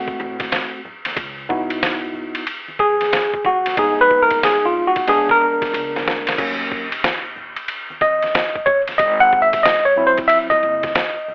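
A worn, slightly out-of-tune tine electric piano opens up front with a light overdrive, soloing over a cool, nocturnal jazz-hop groove in G# minor at 92 BPM with a swung 16th feel, moving through rich extended chords from a rootless G#7b9 to C#m11 and D#m7. Beneath it a woody, gut-strung upright bass sits dark and thumpy in the background, while a muffled, pitched-down sampler-style drum kit with a thumpy kick and medium-tuned snare plays a fill at 5.7 seconds, and very quiet congas and egg shaker add soft-handed texture. The whole mix is squeezed through a telephone-like filter with moderate studio reverb, and this 11-second excerpt is cut from a longer piece.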